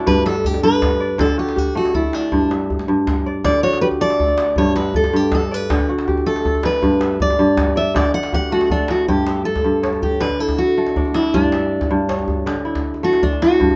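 Set in a rolling 12/8 with a straight feel, this passage from a longer piece of West African traditional string and xylophone music moves at an easy, hypnotic pace and flows steadily throughout. A kora opens at the very start, spinning ringing, crisp arpeggios up front across its broad range. A fingerpicked steel-string jumbo acoustic guitar joins almost immediately to carry the melody, its tone dark and full-bodied, with audible finger squeak, and it takes a solo until 9.1 seconds. Beneath them a medium-tuned djembe keeps the pulse, sounding distant, as if placed in a large room. The harmony sways mostly between G and D, then shifts at 9.1 seconds into a second section that opens on A7/G before settling back. A moderate small-room reverb gives the whole performance an intimate, natural space.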